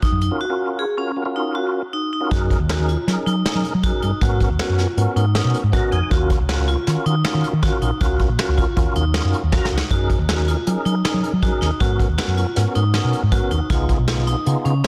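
A dark, round, picked hollow-body electric bass anchors this intricate, brooding progressive instrumental in 5/4 at 158 BPM in Eb minor, joined by an up-front vintage brush kit with a punchy kick and a softly clipped snare, a fat, lightly overdriven tonewheel organ with chorus vibrato, key click and fast rotary speaker that adds short fills at 5.5 and 9.3 seconds, and bright, ringing hard-mallet vibraphone arpeggios, set in a light small-room reverb with a dense, heavily limited master and a brief break near the start.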